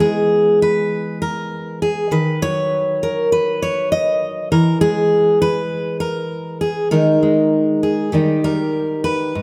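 Folk for solo fingerpicked steel-string acoustic guitar at 99 BPM in 4/4 with a straight feel, wistful and melancholic, its full-bodied jumbo tone sitting up front with audible finger squeak across a range from G#2 to D#5, moving through E, Badd9/D#, E, D#sus4 and D# in a moderate stage-like reverb over this brief 9.4-second excerpt cut from a longer piece.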